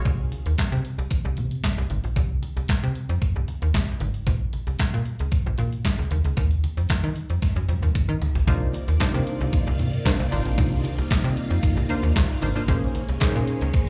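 Late-night and slick, this early-eighties boogie funk cut in C minor moves at 114 BPM in a straight 4/4, taken from a longer piece. A snappy FM bass with a metallic, slap-like attack and a detuned 8-bit drum machine with a thumpy kick, medium-tuned snare, handclaps, hi-hat and toms sit up front, while low-tuned congas with a thick skin play along very quietly beneath them. A swirling, vintage string machine with ensemble chorus and phaser sounds a brief chord at the very start, then returns at 8.5 seconds after a drum fill, just as a punchy, detuned sawtooth polysynth enters with filter-plucked chord comps coloured by chorus and slapback echo. The harmony opens with the groove alone before settling on Ebsus2, then moves through Cm11 and Bbm11 in the second section. The sound has little reverb of its own but comes across as a live gig heard through a club PA, with the drums carrying the echo of a large room.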